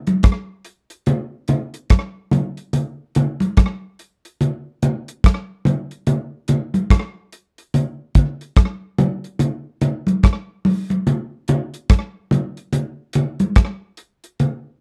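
A damped 1970s drum kit with a tight kick, hi-hat and rim click, touched with slapback echo, sits up front beside bright, thin-skinned congas struck with hard hands, giving this laid-back, meditative reggae excerpt at 72 BPM a swung sixteenth-note feel and a dry, close, vintage studio sound.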